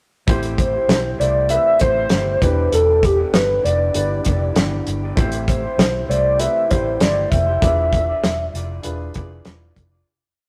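A warbling, detuned lead with chorus, vibrato and tape echo sits up front in this hazy, mellow indie and bedroom pop piece, carrying a nostalgic, motif-based melody from 0.6 seconds. Beneath it, a dry, damped 70s drum kit keeps a relaxed backbeat with a fat snare and tight kick, and a foam-muted fingered electric bass plays a round, melodic line. An electric guitar through a small old amp adds slightly broken-up, lo-fi jazz chord shapes with a drifting pitch, while a woody upright piano halves the chord rhythm in rootless voicings over Am7, Em7 and E7b9, all in a rough rehearsal-room recording with tube saturation and stone room reverb that fades out from 7.6 seconds.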